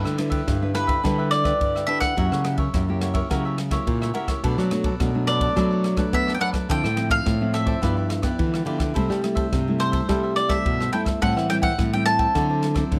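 Samba and choro in a playful, joyful mood, cut from a longer piece, with a woody, double-strung mandolin carrying the melody up front from 0.7 seconds. Crisp, bright cavaquinho and a fingerpicked classical nylon-string guitar fill in the accompaniment, while a second, full-bodied nylon-string guitar plays the bass line with audible finger squeak. An airy small-room jazz kit with dark cymbals, a boomy kick and rim clicks sits up front in a dry, close 1970s-style studio sound, moving through jazzy sixth, seventh and ninth chords.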